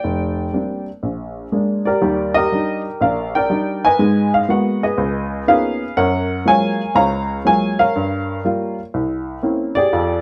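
A woody, slightly detuned upright piano plays alone and up front in this relaxed, sophisticated solo jazz excerpt, swinging in 4/4 at 121 BPM with short sustain across a range from F1 to Bb5, moving through rich changes such as Bb69, Ebmaj7, Abm9 and C7b9 within a dark production and moderate studio reverb.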